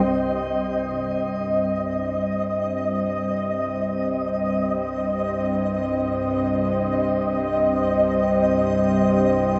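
In free time, this ominous, desolate dark ambient drone opens with a moody analog pad of detuned sawtooth chords and a string-like bowed drone holding low, both fading in from 0.1 s. Alongside them a grainy, flickering granular texture sits up front, its detuned shimmer spread by lush chorus and shimmer reverb, while the tense drone carries vibrato, ring modulation and a noise layer. A huge, dreamy reverb soaks the whole mix, and the 9.6-second passage feels cut from a longer piece.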